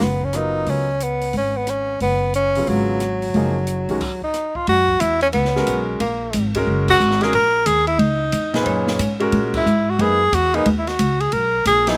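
Dry and close, with the open air of an outdoor take and barely any reverb, this spiritual, open modal jazz excerpt swings at 180 BPM in 4/4, shifting to F# mixolydian after the opening, as a mellow, breathy tenor saxophone sings the melody up front with subtone, vibrato, scooped notes and a slapback echo over a woody, growly pizzicato upright bass, a warm, long-sustaining baby grand piano, and a natural acoustic drum kit with dark cymbals and a boomy kick, the band halting together at 4.0 seconds and hitting full-band accents at 6.8 and 9.5 seconds.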